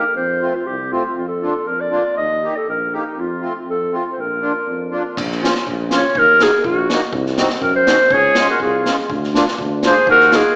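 A bouncy, jolly alpine folk dance in a straight 2/4 at 121 BPM, this excerpt of an alpine dance band sets an up-front, mellow clarinet melody over reedy, airy accordion with light tremolo tuning and a close-miked tuba bass with light vibrato, turns from Bb major to Bb minor at 5.2 s as a boomy, dark-cymballed street-band drum kit enters, and adds a clear, distant trumpet second line from 8.1 s, all within a wet church-like reverb that comes across with a small-speaker sound.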